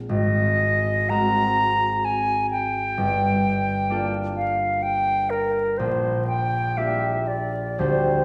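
Heard from further back in a wet recital hall with vinyl crackle, this short excerpt of a wistful, mysterious impressionist classical duo moves in a rubato 3/4 at about 56-65 BPM, with a pure, straight-toned flute carrying the melody with a soft attack over ringing, fingerpicked concert harp chords drifting from Ab9 through Gm9 to Bb6.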